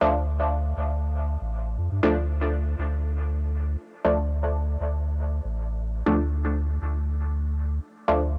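A lightly swung 16th-note pulse in 4/4 drives this short, hypnotic, hazy dub techno cut from a longer piece. Muted, detuned sawtooth chord stabs sit up front with a filter sweep, chorus, phaser and dub echo, while a round, sine-like sub bass with tube saturation holds the low end. The stabs drop out at 8.2 seconds, just before the bass, and the whole recording has a gritty cassette character, dull on top, with light digital reverb.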